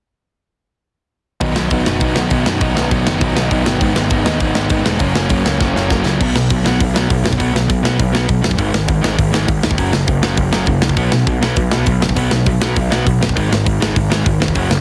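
This raw, angry punk rock excerpt bursts in at 1.4 seconds at a driving 201 BPM in straight 4/4, with two picked, overdriven guitars, fuzz bass and drums all arriving together. An up-front, sludgy distorted guitar carries the riff with a dark, heavy edge, while an overdriven semi-hollow guitar plays a riff of its own further back with a hollow-body character until it drops out at 6.2 seconds. Beneath them, the picked electric bass is bright and punchy, its fuzz-laden overdrive cutting through the low end. A tight metal drum kit sits up front in a studio room, with a medium-tuned snare, a tight kick, crash cymbal and hi-hat, and a drum fill near 5.6 seconds leads into the second section. The chords move from B through G#m and F# before shifting to blunter B5, G#5 and F#5 power chords, all pressed into a dry, heavily compressed, radio-style sound.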